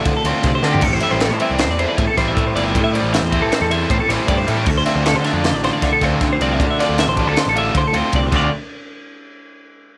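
The recording sits in a light reverb, with a crisp fusion drum kit placed up front in a small, pumping room, its high-tuned snare and tight kick cutting through. This restless, wistful math rock and midwest emo fragment, cut from a longer piece, moves at 156 BPM in 5/4 with a straight feel in D minor. A twelve-string electric guitar spins compressed, bright arpeggios high in the mix over a clean, twangy electric guitar carrying the accompaniment. A biting, double-tracked overdriven guitar plays the riff, while a fuzz-soaked, growly picked bass drives the low end. The harmony shifts from Dm7 to Am7 and back to Dm7, with drum fills at 0.6 and 8.3 seconds before the chords give way at 8.5 seconds.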